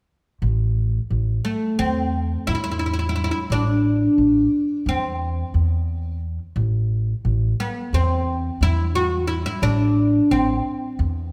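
Heard through the moderate reverb of a recital hall, this melancholic, soulful Turkish passage in 9/8 opens with a dark, thumpy pizzicato upright bass on gut strings at 0.4 seconds, joined at 1.4 seconds by a bright, woody fretless oud whose plectrum-plucked double strings sit up front beside it.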